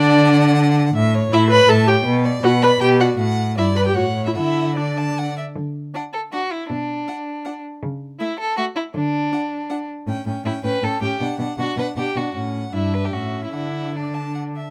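Spirited and cheerful, this quick classical-period movement for string quartet moves in 3/4 at roughly 144-165 BPM, its rubato feel giving the pulse a supple give and take in D major. The first violin carries the melody between B4 and A5 with a smooth, even vibrato tone, while a rich second violin spins a companion line that ranges more broadly, from D4 up to B5. Beneath them a focused viola fills in the accompaniment, and an up-front cello anchors the bass between G2 and D3, the lower strings sitting noticeably fuller in the balance than the singing top line. The harmony circles through D, A, B minor and F-sharp minor before cadencing home on D at 4.4 seconds. A second section then begins at 5.6 seconds, passing through a brief chordless stretch around 8.9 seconds and an A7 before returning to D at 13.5 seconds. Close, detailed miking with little reverb lets every bow stroke and vibrato come through intimately in this short cut from a longer piece.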